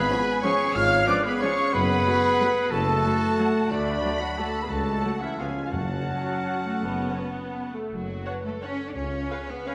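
A wet scoring-stage reverb gives this short cut from a longer orchestral ballroom waltz in 3/4 a sweeping, bittersweet glow, its rubato pulse carried by a full studio orchestra. Warm violins sing the melody with vibrato, portamento and a soft attack, while a second violin line, an airy background flute and a bright, vintage-toned solo clarinet weave supporting lines around it. Mellow French horns hold sustained chords, a trumpet section adds soft-edged stabs, and a focused viola section fills in the accompaniment. Rich, smooth cellos and double basses anchor the bass alongside a very quiet tuba, and a dry, close timpani on calf heads sounds briefly at 5.7 seconds. The trumpets, flute and clarinet fall away at 7.7 seconds, leaving the strings and horns to carry the closing bars as the harmony returns to its dominant chord.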